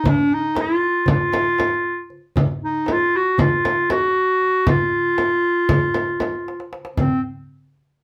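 A mellow, soft-attacked clarinet sings a hypnotic, longing melody in a classical Turkish makam style over a small, high, clay-shelled darbuka, joined at 0.1 seconds by a compressed, saturated frame drum, moving in 9/8 at 234 eighth-note beats per minute through a small, reverberant room heard from further back, with a drum fill at 6.5 seconds just before this fragment of a longer piece shifts into a new section.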